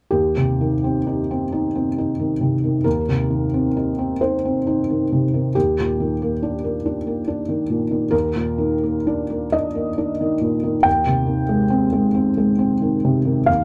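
A felt-muted upright piano plays alone, its soft, intimate tone sitting up front with the natural action noise of the instrument clearly audible. This tender, peaceful fragment of neoclassical minimalist piano moves slowly in 6/8 at around 45 BPM with a rubato, uneven pulse, drifting from Cm/Eb to Ebmaj7 at 5.5 seconds and settling on Abmaj7/Eb at 10.9 seconds. Light reverb and a dark production give the short passage, cut from a longer piece, a hushed, close-up feel.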